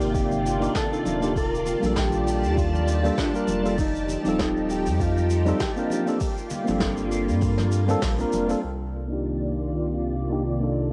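A silky, vintage string machine sits up front in this smooth, relaxed sunset chillout excerpt at 99 BPM in C dorian, its sustained chords colored by phaser and ensemble chorus over a round sub bass, a clean tine electric piano and a dark, fingered electric guitar melody that ends at 8.3 seconds. A deep, overdriven electronic kick, a brushed kit with hi-hat, shaker and snare, and very quiet hard-hand congas carry a swung 16th-note feel, while the home cassette recording and moderate spring reverb in a small room lend a homemade air. Once the percussion has stopped by 8.6 seconds, filter sweeps pass through the electric piano and strings as the harmony returns to Cm11.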